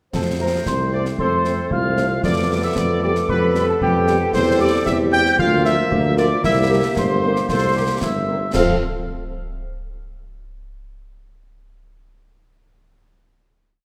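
A warm, punchy tuba sits up front with a smooth top, laying down bass on the beats and sustained bass notes beneath a festive, rousing military-style march for wind band in F major, moving in 2/4 at 114 BPM with a straight feel. A clear trumpet section carries the melody with light vibrato and a close, present sound, while a distant wooden piccolo with a crisp attack doubles the tune at the octave in a pure, expressive voice. A woodwind section adds a tight counter-melody and sustained chords, and a mellow trombone section holds soft-edged chords in the background. A very quiet, dark French horn section enters at 0.4 seconds with after-beat chords, and a close, dry concert snare drum, clash cymbals and concert bass drum supply a marching snare over a bass drum on the beat, with the cymbals sounding dark. The harmony moves from F through G7/F, C/E, Bb/D and C7 before the whole piece closes on a final F chord at 8.5 seconds, set in a wet scoring stage reverb.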